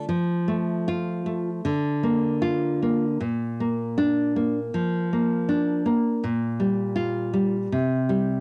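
Romantic solo classical guitar in 4/4 at 79 BPM, played with rubato: a warm, full-bodied nylon-string guitar, fingerpicked and up front, moves intimately yet passionately through F, Bb/D, Bb, Gm7/Bb and C5 between Bb2 and F4 across this 8.4-second cut from a longer piece, with a cassette-tape character, light reverb and the feel of a home recording on cassette.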